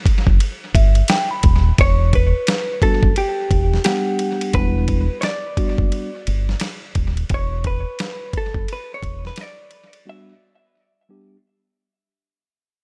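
Smoky and mellow, this jazz-hop excerpt at 87 BPM with a swung 16th feel in E dorian sets a clean, picked hollow-body jazz guitar melody dressed in tape echo over a gritty, compressed sampler-style drum kit with a thumpy kick and medium-tuned snare, a dark, round, punchy fingered dub bass up front, and warm tine electric piano heard through its built-in speakers, moving from Em to Em9 at 1.8 seconds as the piece begins to fade out, with the drums stopping at 10.1 seconds for a closing break in an echo-heavy digital ambience.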